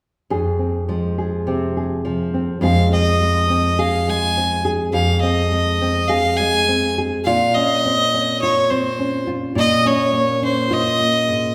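Acoustic folk for a duo or small band, intimate and reflective, moving at 104 BPM in a straight 4/4 in F minor, cut from a longer piece. A nylon-string guitar opens alone at 0.3 seconds as accompaniment, its dark, woody tone from old strings thumb-plucked and full-bodied, sitting up front in a deep classical register. At 2.6 seconds a single bowed fiddle enters with the melody, clear and earthy, also up front, staying high in its range against the guitar. The harmony rests on Fm before shifting to Bbmadd9 at 7.2 seconds, and both parts continue to the close of the passage. A wet scoring stage reverb of about 1.5 seconds gives the pair the generous air of a church or concert hall.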